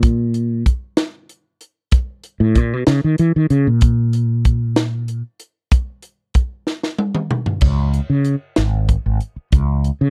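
A mellow fretless electric bass and a fusion drum kit open this short cut from a longer electric jazz fusion piece, with the bass taking a solo from the start. The mood is intense and driving, moving in a straight 6/8 at 63 BPM counted in dotted quarters, in C# dorian and tuned slightly above standard pitch. The bass sounds dark, round and direct, ranging from G#1 to E3 and sitting up front alongside the drums. The acoustic kit is crisp, with a high-tuned snare, a punchy kick, hi-hat, crash cymbal and toms. A drum fill arrives at 6.7 s and leads into a new section at 7.6 s, where the bass solo ends and the pair carry on together. The dry, close 1970s-style studio sound keeps both instruments intimate and immediate.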